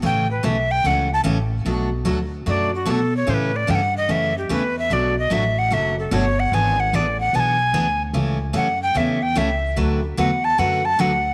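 A breathy alto recorder carries the melody from the opening moments, its soft attack, straight tone and lifted highs sitting up front over a down-home, playful western swing groove in 4/4 at 148 BPM with a swung eighth-note feel. Beneath it, a picked steel-string acoustic guitar supplies bright, full-bodied accompaniment, its jumbo body ringing out with audible finger squeak. An upright bass anchors the low end with woody, growly pizzicato, pushed forward in the mix alongside the other two parts. The harmony moves through A7 and Bm7 changes before turning to E7, back to A7, and settling on D6 near 9.8 seconds. Light small-room reverb gives the trio an intimate, close-knit feel in this short cut from a longer country piece, with the guitar dropping out at 11.1 seconds just before the bass and recorder finish.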